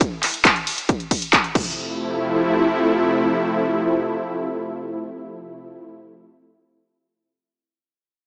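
Uplifting trance at 136 BPM in 4/4 and F major, this short cut from a longer piece carries an uplifting, euphoric mood. It opens on a drop, with a heavy, layered electronic kick roughened by overdrive sitting up front beside a punchy analog drum machine of crash, ride, hi-hat and handclaps, its tone tape-warm; both drum parts run until 1.6 s. A tight sequencer bass on F1 then arrives in the background, a sawtooth and square-wave filter pluck with a fast attack and decaying notes, treated with tube saturation and sidechain pumping as the harmony settles on Fmaj7. From 1.8 s a lush, full-bodied supersaw pad takes the foreground, its detuned unison saws and sub-octave sine swelling in slowly from a gentle attack and sustaining chords between C3 and E4, also pumping against the sidechain until 5.9 s. A moderate hall reverb of 1.9 seconds surrounds the mix, while the overall sound carries the character of a small speaker.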